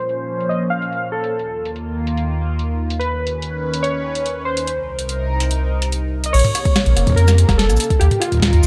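Heard through light reverb and a digital ambience, with a low-pass filter over the mix and a filter sweep running through the first 6.3 seconds, this short IDM excerpt at 144 BPM in straight 4/4 feels intricate and cerebral. Warbly lo-fi synth keys, built from detuned pulse and sawtooth waves with chorus and tape echo, carry a nostalgic, dark melody between F4 and F5 from the start. Beneath them, a swirling, vintage analog pad with phaser and chorus sits up front, holding slow-attack chords from C2 to C5 through Bbmadd9, Ebsus2, Badd9/D# and Cm7. A booming analog drum machine enters almost at once, overdriven and re-recorded in a small room, with a crisp snare, metallic hi-hats, cabasa, rim clicks, crash cymbal and toms. At 6.3 seconds a round, sine-based sub bass with tube saturation arrives prominently in the F1 to F2 range, and an electronic kick drum soon adds a deep, produced thump.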